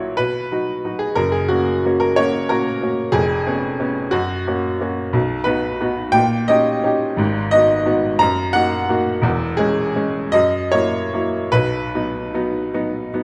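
Passionate and warm, this 13.2-second excerpt from a romantic classical character piece for solo piano unfolds in a flexible, rubato 6/8 in B major at roughly 49-63 BPM (dotted quarters), its bright upright piano sounding brilliant, woody and slightly detuned with a short sustain, placed up front in a moderate recital hall reverb, spanning E1 to A#5 as the harmony travels from B through F#, G#m7 and F#7 before settling back on B at 11.5 seconds.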